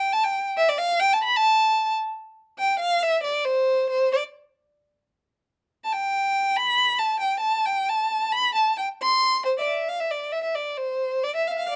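A lone bowed violin opens this short cut from a longer Balkan folk piece, its dark tone placed up front in a light reverb, moving in a straight two-beat metre. The single player leans into vibrato and portamento with a soft attack and a smooth top end, giving the line an expressive, bittersweet yet fiery character. A solo passage stands out from 2.3 to 9.4 seconds before the closing section carries the violin to the end at 11.8 seconds.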